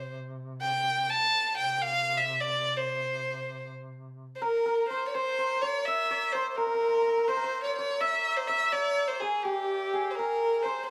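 Persian music in C dastgah mahur at 84 BPM in 6/8, this festive excerpt features a rich, intimate violin melody played sul tasto with light vibrato and an airy bow, set over a mellow, scooped duduk drone that sounds until 4.5 seconds, while a bright, shimmering hammered santur enters up front with a second line at 4.4 seconds, all captured as a live band in one room with a wet studio reverb.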